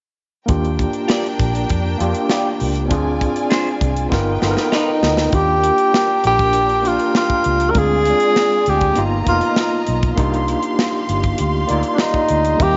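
A breathy tenor saxophone carries the melody in a jazz style, entering at 4.7 seconds and sitting up front in this lush, romantic 1970s-style soul piece in Eb major at 99 BPM. Beneath it, a gritty, barky electric piano with medium tremolo plays accompaniment through a combo amp, while a dark, round, foam-muted fingered bass sits up front and punchy. A dry, polished funk drum kit with a tight kick and a medium-tuned snare keeps a straight 4/4 groove on hi-hat, kick and snare, with a fill leading into the second section. From 1.1 to 4.9 seconds, a lo-fi, compressed electric guitar through a small old amp adds a slightly broken-up riff treated with phaser. A close, intimate string section, bowed sul tasto with soft attack and light vibrato, supplies a warm second line over lush chords such as Ebmaj9, Dm7b5, G7alt and Cm11, all in light studio reverb in this short section cut from a longer piece.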